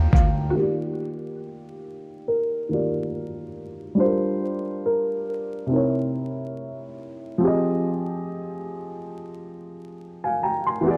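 A brief upright piano fill opens this nostalgic, mellow hip hop excerpt at 70 BPM with a light swing, where a felt-muted upright piano carries a soft, intimate melody until 7.0 s over a dark, woody upright piano accompaniment with a vintage cassette-tape colour, while a very quiet, lush pad and an up-front pizzicato upright bass sound only in the first 0.5 s, in an echo-heavy mix with vinyl crackle, light reverb and a filter sweep from 0.6 s.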